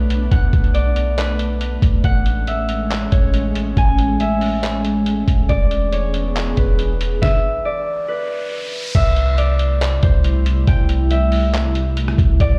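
Hazy and melancholic, this atmospheric cloud-rap excerpt moves at 139 BPM in a half-time feel, with a fingerpicked concert harp melody ringing through a low-pass filter and digital delay over a glassy, ethereal FM pad whose warbling chords carry ensemble chorus, built-in reverb and sidechain pumping. Underneath, a deep, boomy 808-style sine bass sits up front alongside a compressed, pitched-down lo-fi sampler kit with a thumpy kick, fat snare, handclaps, rim clicks, hi-hat and crash, re-recorded in a small room for a muffled, tape-warm character. A stop at 7.2 seconds lets an electronic riser build from 7.8 seconds into a new section at 8.9 seconds, where the harmony moves from Bm7, Amaj7 and E7 to C6, all heard as if played through a big sound system in a bare room.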